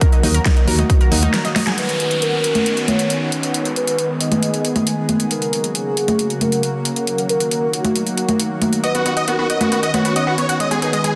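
This soaring, euphoric uplifting trance cut at 136 BPM in B major opens with a velvety, chorused synth lead carrying a second line over a punchy, overdriven kick, a big-room kit with a huge snare, metallic hats and congas, warbling analog pluck arpeggios and a round FM bass, leading into a brief break and a drum fill at 1.6 seconds. With the kick, bass and pluck now gone, a downlifter sounds, and the lead and drums carry on over Badd9, G#m, F# and D#m chords. At 8.8 seconds the pluck returns alongside a bright, detuned supersaw lead with tape coloring and digital delay, the mix sitting in a lush hall reverb within a dense, heavily limited master.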